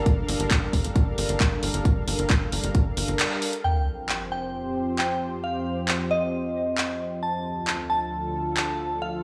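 Uplifting trance in an emotional, soaring mood, where a lush, detuned unison pad with chorus and sidechain pumping sustains chords over a punchy, tape-tinged electronic kick, a house kit of handclaps and hi-hat, and a tight, driving sequencer bass that pumps until 3.2 seconds, before a glassy, crystalline FM bell with tremolo and dub echo enters at 3.6 seconds over a sub drop, all in a small digital room.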